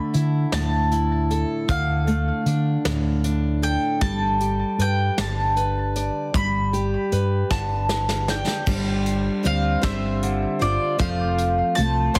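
A bright, woody mandolin carries the melody from the very start, its doubled strings up front and trailed by analog delay, alongside a fingerpicked steel-string acoustic guitar with fresh strings and audible finger squeak. This is indie folk in 6/8 with a straight feel, anthemic and warm in mood, cut from a longer piece, and the arrangement steadily builds. A hollow-body short-scale electric bass, dark, round and punchy, sits close in the mix, while a soft brush kit with dark cymbals, a medium-tuned snare and a tight kick plays in a natural studio room. A drum fill at 7.5 seconds leads into a new section at 8.7 seconds, where a picked twelve-string acoustic guitar joins with a shimmering, octave-doubled sound. Light studio reverb surrounds the parts, and heavy multiband compression gives the whole piece a dense, radio-ready sheen.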